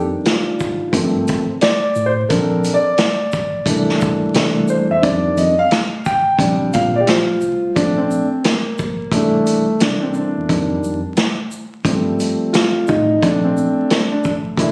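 Jazz-hop with a cool, smooth mood, cut from a longer hip hop piece: a dark, boxy concert grand piano solos up front through lush extended chords with long sustain, a mellow tine electric piano carries the bass line through its built-in speakers, and from 0.3 seconds a warm vintage drum kit of punchy kick, medium-tuned snare, hi-hat and shaker adds a swung groove with a rolled-off top, while the mix sits in light reverb, vinyl crackle and the compressed haze of a phone recording.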